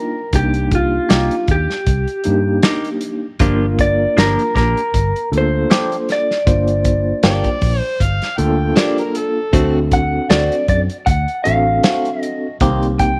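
A slightly broken-up, lo-fi electric guitar carries the melody over a gritty tine electric piano with medium tremolo, joined at 0.3 seconds by a round, punchy muted bass and an up-front soul drum kit with a tight kick and rolled-off top, then at 1.1 seconds by clean, direct-recorded guitar stabs through a phaser, in this soulful, brooding straight-eighth soul blues excerpt in G minor at 78 BPM, where an overdriven harmonica adds a brief second line with scooped notes and tongue slaps from 7.3 seconds.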